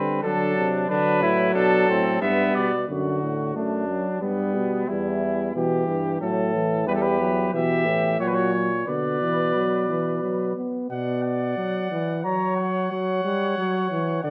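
Elegant and stately, this short classical passage is an imitative canzona for brass ensemble, moving at 90 BPM in a straight 3/4 and settling into B minor from 6.9 s. A mellow trumpet carries the melody, sounding briefly at the opening, falling silent at 2.9 s and returning at 6.9 s, its tone distant and roomy. Beneath it, a flugelhorn with a warm vibrato sings the second line throughout, while a dark trombone with light vibrato and a smooth top supplies accompaniment. A mellow euphonium anchors the bass until 10.5 s, its sound set back in the space. The harmony travels from D and G through E minor toward F-sharp, and the close, detailed microphones capture the ensemble within a moderate recital hall reverb, the fragment being cut from a longer piece.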